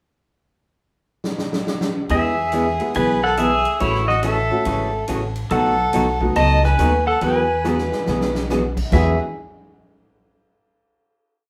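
Swinging and down-home, this short western swing piece in E major moves at 141 BPM. A big-band drum kit opens with a fill at 1.2 s and keeps a ride cymbal pattern. At 2.1 s an up-front, twangy pedal steel guitar enters with a motif-based melody full of slide and volume swells. A distant, biting fiddle carries a harmony line mostly in sixths, while a dark, hollow-body archtop guitar plays four-to-the-bar rhythm. A woody upright bass thumps out a two-beat root-and-fifth line with walk-ups, and at 2.8 s a jangly tack piano adds syncopated comping in the background, all heard as a band playing live in one room before ringing out on a final chord.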